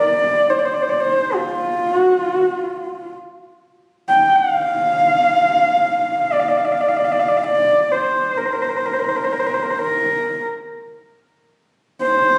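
A dark, husky horsehead fiddle carries this proud, galloping Mongolian traditional passage alone, a single player bowing horsehair strings with an airy bow, soft attack, light vibrato and sliding portamento, its tone smooth at the top. The fiddle sits close and up front with an intimate feel, framed by a moderate recital hall reverb. A brief opening phrase gives way at 3.4 seconds to a restatement that runs to the end of this fragment cut from a longer piece.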